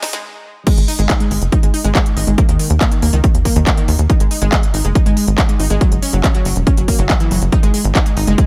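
Driving and bittersweet, this short cut from a longer uplifting trance track opens with a drum fill, pauses briefly, then hits the drop at 0.7 seconds and rides it to the end. The overdriven electronic kick drum sits heavy and up front, while a layered techno drum kit adds a cracking snare, smooth hi-hats, handclaps and crash cymbal, also with overdrive. A tight, nasal sequencer bass of sawtooth and square waves punches in with a fast-attack filter pluck, its tube saturation and sidechain pumping keeping it close and insistent. Above it, a lush, full-bodied unison pluck of detuned sawtooths, sine and a noise layer spins arpeggios, pumping against the kick and trailing dub echoes. The harmony moves through power chords on G# and D# and a thirdless F#7, and a high-passed digital ambience fills out the space.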